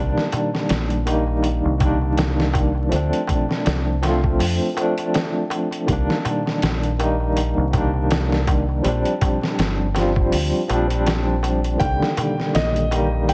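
Hypnotic and smoky, this trip hop excerpt moves at 81 BPM in C dorian with a lightly swung sixteenth feel. A barky tine electric piano, bright through a combo amp with tremolo and tape echo, carries the chords alongside a dark, round, tube-saturated fingered bass, while a gritty, pitched-down sampler-style kit with a thumpy kick sits up front and a crisp metal-shell darbuka played with soft hands ticks in the background. At 11.8 seconds a felt-muted upright piano slips in with an intimate, mellow melody coloured by 12-bit sampler grit and dub echo, all set in a small room with vinyl crackle.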